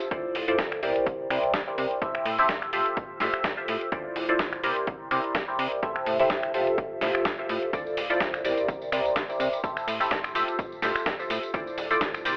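A punchy, detuned sawtooth polysynth comp with chorus, phaser, a low-pass filter and sidechain pumping drives this joyful, feel-good filtered disco house excerpt, cycling through Dm9, C9 and Fmaj9/A over a gritty, compressed sampler-style soul kit of finger snaps, hi-hat, snare and tambourine, a snappy FM bass with a metallic attack, and a layered, tape-tinged electronic kick, all heard through a light reverb and a telephone-like sound.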